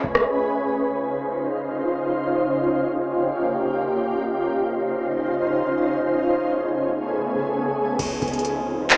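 A rough home demo sound with a small-speaker feel and wet studio reverb frames this blissful, dreamy stretch of atmospheric cloud-rap in free time, cut from a longer piece in Db lydian. A shimmering, ethereal pad with octave-up shimmer, chorus and pumping sits up front through all 9 seconds alongside an airy, wind-like noise texture, while the booming drum machine with its deep kick and metallic hats joins the deep, boomy 808-style bass only briefly at the opening and again from 8.0 seconds. That final moment also brings a very quiet electronic impact.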